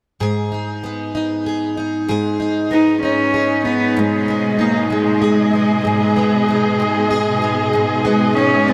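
A dramatic, melancholic pop excerpt in a slow 6/8 opens with a double-tracked, picked plugged-in steel-string acoustic guitar with audible finger squeak, joined at 2.7 seconds by an intimate, bowed cello melody played sul tasto with light vibrato, a soft attack and analog delay, before a studio string section enters at 4.0 seconds with sustained chords, expressive portamento and a smooth top, all soaked in a huge, dreamy ambient reverb.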